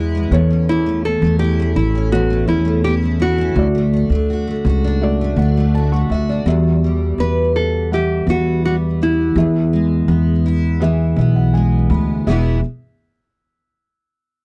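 A straight 4/4 pulse at 83 BPM carries this tender, reflective acoustic pop excerpt, tuned to A4 = 436 Hz, where a woody pizzicato upright bass sits up front beneath a double-tracked, full-bodied picked steel-string guitar with audible finger squeak, a mellow felt-muted upright piano with dark tone and audible action noise adds fills at 5.0 and 10.8 seconds, and a small, fingerpicked nylon-string guitar carries the melody from 0.7 seconds over Aadd9, D, Emadd9 and E chords, all captured in a dry, close 1970s-style studio sound with light reverb.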